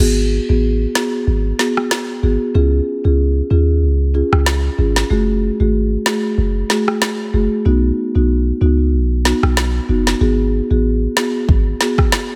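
This dancehall cut, taken from a longer piece, moves at 94 BPM in 4/4 with a light 16th-note swing and a tough, sultry mood in G# phrygian. A soft-mallet marimba carries the accompaniment, its rosewood bars sounding woody, mellow and round, close-miked and dry. Beneath it, an 808-style bass sits up front, deep and boomy, with a dark sine tone, a noise layer and a fast attack that decays. The electronic afro-pop drum kit supplies a deep kick, a woody snare, rim clicks and crash cymbal, with the kick dropping out from 10.2 to 11.5 seconds. The harmony cycles through G#m7, C#, F#madd9 and B before returning to G#m7, and the whole mix is kept close and dry with little reverb.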